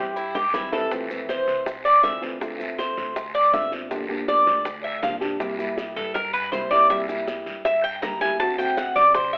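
Cuban son with a guajira lilt, this short cut from a longer piece moves at 160 BPM in 4/4 with a relaxed, danceable ease in F major. It opens on a drum fill over C, while a warm, vibrato-touched trumpet with scooped notes plays up front on G4 and stops by 0.5 seconds. From 0.9 seconds the bright, metallic Cuban tres takes a picked solo of arpeggios on its doubled strings, some octave-doubled, sitting up front over Fmaj7, Dm7, Gm7, C7 and a closing D7 at 8.4 seconds. A fingerpicked nylon-string guitar in classical style supplies accompaniment, and a woody, thumpy upright bass with gut strings plays pizzicato in the background. The percussion adds a raspy guiro, very quiet grainy maracas that are close and dry, and round, low-tuned bongos struck with hard hands. A moderate large-studio reverb and a telephone-like sound color the whole mix.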